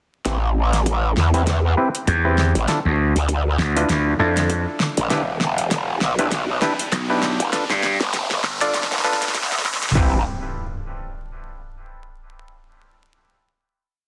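Playful and funky, this short glitch hop piece at 99 BPM in A minor is one long build from 0.3 s: a mellow, stringy clav plays syncopated rootless chord stabs through sidechain pumping, dub echo and a sweeping low-pass filter, while a growling, wobbling bass carries chorus-tinged modulated phrases. A gritty overdriven slap bass joins at 2.1 s with chopped phrases answering it, and a layered electronic drum kit pairs a punchy kick and claps in the background with a fat snare and metallic swung hats up front, full of edits and a fill. A background riser from 2.9 s leads to an impact and a final Am7 chord, all set in plate reverb and vinyl crackle.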